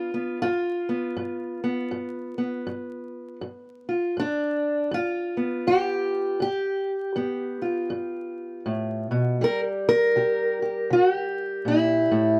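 A dark, woody parlour steel-string acoustic guitar with old strings, fingerpicked and up front, carries this swaggering, soulful solo fragment of acoustic country blues at 80 BPM in 4/4 with a swung eighth-note feel in G mixolydian, moving from G7 to C7 at 9.4 seconds, captured by close, detailed microphones with light reverb and a bed of vinyl crackle.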